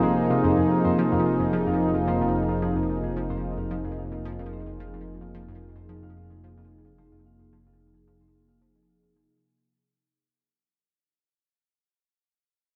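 Ambient, hypnotic and cosmic, this excerpt opens with a bright, evolving pad up front holding sustained chords through a chorus and a resonant filter swell, while a fat, nasal analog bass sits on a single low note beneath it. In the background, a round, detuned analog pluck with ring modulation repeats a low riff through chorus and tape echo, and a mellow, thumb-plucked concert harp rings out arpeggios through tape echo. Everything sits in a wet plate reverb as the music fades out, with the harp lingering alone until 11.6 seconds.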